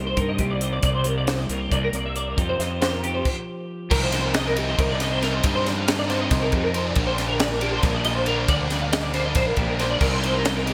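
A fuzz-soaked fingered electric bass sits up front, punchy and overdriven, anchoring this short, wistful and restless math rock and midwest emo passage in C minor, cut from a longer piece and moving at 276 BPM in eighths through a straight 7/8. Two clean, twangy twelve-string electric guitars open together: one plays bright arpeggios with an ensemble chorus across the whole passage, while a quieter one in the background picks accompaniment with subtle chorus until 4.8 seconds. A crisp fusion drum kit enters at 0.2 seconds, its high-tuned snare, tight kick and glittering cymbals pumping in a small room. After a stop from 3.3 to 3.9 seconds, a double-tracked, biting overdriven guitar joins with a riff as the harmony moves from Cm7 through Gm/Bb and back. The sound is bright and 1980s-style digital, with a moderate plate reverb adding gloss.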